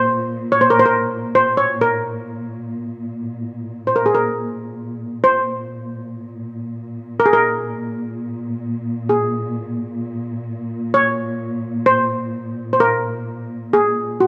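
A metallic, shimmering double seconds steel pan, struck with hard rubber sticks and sitting up front, carries a mournful, longing Caucasian lament melody in Bb minor at 64 BPM in a rubato 3/4, over a dark, distant bowed cello section holding a soft-attacked drone on Bb2 with expressive vibrato, with the phrase moving into a new section at 5.2 seconds in this closely miked, lightly reverberant excerpt from a longer Caucasian folk piece.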